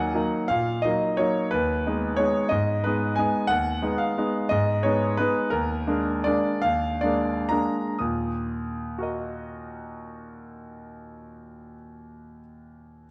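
A solo concert grand piano opens this nostalgic, elegant classical waltz in 3/4, its brilliant, up-front tone carrying a deep bass and a natural character as it moves with flexible rubato. The playing slows between 5.0 and 8.0 seconds before a new section begins at 8.0 seconds, in a brief passage cut from a longer piece. A moderate concert hall reverb surrounds the instrument within a dark overall production.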